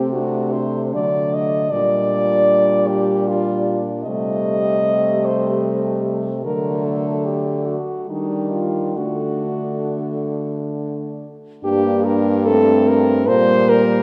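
A lush church reverb with a long 3.3-second decay surrounds this solemn, elegiac excerpt for horn quartet in G minor, moving in a rubato 3/4 at 65-80 BPM. Up front, a warm French horn sings the smooth-topped melody, while a second horn traces a quieter line in the background, a dark-toned horn fills in the accompaniment, and a warm horn with light vibrato and soft attack anchors the low register on the bass line. The harmony moves through shadowed chords toward a D, and the phrase settles on G minor at 11.7 seconds.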